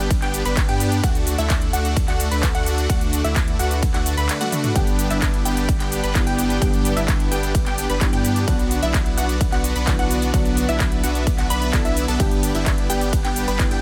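A punchy, up-front electronic kick drives a straight 4/4 pulse at 129 BPM, joined from 0.1 seconds by a layered big-room dance kit of handclaps, metallic hi-hats, ride cymbal, shaker and toms, with a drum fill around 4.4 seconds. This festival progressive house passage in G major feels uplifting and euphoric, moving through G, D and B minor chords. A huge, detuned supersaw chord riff carries the harmony over a deep, saturated sub bass with a thick triangle tone, both pumping against the kick through sidechain compression. Behind them sit a slow-attack supersaw pad coloured by a phaser, and a bright unison pluck playing high arpeggios with 12-bit sampler grit, a moving notch filter and digital delay. At 4.7 seconds a soft, felt-muted upright piano enters in the background, mellow and intimate with audible action noise and its own delay echoes. The mix is dry and close, and the passage is cut from a longer piece.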